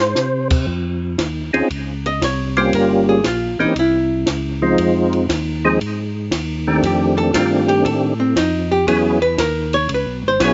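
A swinging 4/4 groove at 117 BPM drives this bluesy soul jazz organ trio fragment, with a compact cocktail drum kit of dark cymbals, a high-tuned snare and a punchy kick joining at 0.2 s. A thick, lightly overdriven tonewheel organ bass with key click and slow rotary speaker sits beneath an up-front, mellow percussive organ melody, whose round third-harmonic percussion, chorus vibrato and slapback echo give it a soft glow. An up-front archtop guitar, miked and amplified, enters at 2.1 s with a dark, clean, picked hollow-body solo over changes moving from Dbmaj7 through Gm7b5, C and Fm7 to F13 and E69, all in a dry, close outdoor sound with a dull top end.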